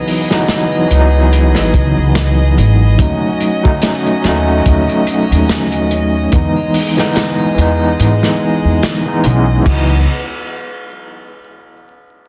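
Trip hop at 72 BPM in C# minor with a hypnotic, melancholic mood, built on a barky, overdriven tine electric piano with fast tremolo and tape echo playing chords that move from C#m11 through D#m7b5 to Emaj7, a growly, woody pizzicato upright bass carrying a filter sweep, a crunchy, saturated breakbeat kit with dark cymbals and a tight kick, sul tasto chamber violins holding soft-attack sustained chords, and tambourine and triangle sitting close and dry in the background, the mix sealed by a dense, heavily limited master with vinyl crackle and light reverb.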